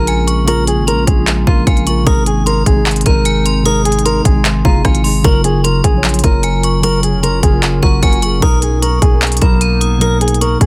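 A fingerpicked flamenco guitar carries the melody in this brooding, hard-hitting trap clip, its boxy acoustic tone softened by a low-pass filter and trailed by delay. Alongside it from the start sound a brilliant, inharmonic FM bell ringing a second line high above with chorus and phaser, muted felt-like synth keys giving dark, intimate accompaniment through chorus and a low-pass filter, and a growling, buzzy 808-style bass that hits fast and decays. From 0.1 seconds a produced trap kit sits up front with a hard-clipped kick, crisp hats, handclaps and rim clicks in a half-time feel, while a very quiet, warbling tape-like pad adds nostalgic, lo-fi sustained chords beneath. The harmony moves from Bbm7 through Ab and Gbmaj7 to Bmaj7 across the roughly 10.7-second fragment. The sound is dry, with a dense, heavily limited modern master.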